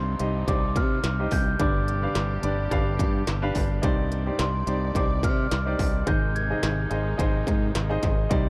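Driving and dramatic, this piano-driven pop excerpt in C minor moves at 107 BPM with a light sixteenth-note swing, as a clear, present, polished baby grand plays beside a punchy, bright fingered electric bass and an industrial drum kit with a distorted kick and clanging snare, both of these sitting up front, while a glockenspiel played with rubber mallets rings a mellow, bell-like melody until 7.2 seconds over veiled, muted chamber strings holding soft bowed chords in the background, all in a dry, close 1970s-style sound.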